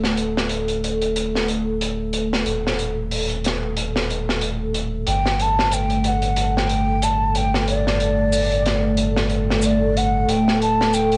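A crunchy breakbeat kit of hi-hat and medium-tuned snare sets a lightly swung 92 BPM groove in 4/4, its gritty, saturated sound pushed up front with a rolled-off top. From the first moment of this melancholic trip hop excerpt, a dark analog pad holds sustained chords moving between D5 and Gsus2, its detuned, ring-modulated tone thickened by chorus and cassette tape coloring. Beneath it, a soft dub sub bass sits deep and round, gently driven by tube saturation. At 5.1 seconds a breathy, mellow jazz flute enters with the melody, sounding distant and hollow with vibrato and a dub echo trailing behind it. Close, acoustic maracas join at 5.7 seconds, and the whole piece carries the lo-fi haze of a home cassette recording with light reverb.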